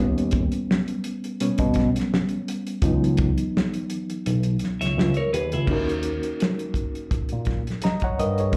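R&B and neo-soul at a late-night, smooth 84 BPM, where a reedy, lightly overdriven electric piano with fast tremolo and slapback echo takes a solo through the first 5.7 seconds, over a barky tine electric piano bass pushed through a combo amp with phaser and a dry, fat-snared soul drum kit with dark cymbals and a tight kick. A clean, twangy, picked electric guitar with phaser adds a brief second line from 4.8 to 5.9 seconds, while the kick drops out just before the music shifts to a D#m7 section. The whole short cut sounds like a live club set heard through the venue's PA, with light club reverb.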